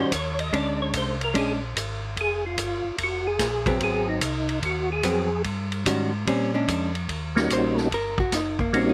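A percussive tonewheel organ, round and clean with third-harmonic percussion, chorus vibrato and a slow rotary speaker, carries the melody as a soloist through Eb7#9, Bb7#9 and Ab7#9 changes until 7.1 seconds, when a picked, compressed hollow-body jazz guitar sitting up front takes over the solo on a returning Eb7#9. This swinging, soulful soul jazz organ trio runs at 146 BPM in 4/4 with a swung eighth-note feel, its bass line played by a mellow second tonewheel organ that shares the vibrato and slow rotary. A vintage acoustic drum kit enters at 0.1 seconds, mid-forward with punchy kick, medium-tuned snare, hi-hat and dark ride cymbal under a rolled-off top, all in a dry sound cut from a longer piece.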